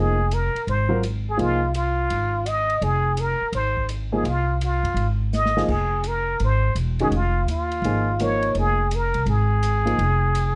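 A swung eighth-note pulse in four drives this brief, searching and intense modal jazz passage, cut from a longer piece. Out front, a trumpet with a plunger mute carries the melody in a whispered, breathy voice, its wah-wah colour, gentle vibrato and soft attack giving it an intimate, smooth-topped jazz solo character. Close beside it, a woody, thumpy pizzicato upright bass with steel strings holds down the low end. The drum kit sits much further back, sounding like a small acoustic room with dark cymbals, a medium-tuned snare and a boomy kick, and it plays a short fill between 5.3 and 5.7 seconds. A warm grand piano with short sustain comps beneath the trumpet, dropping out at 1.6 seconds and returning at 4.1, while the harmony moves to a rootless chord as the fill ends and light reverb softens the mellow, rolled-off sound.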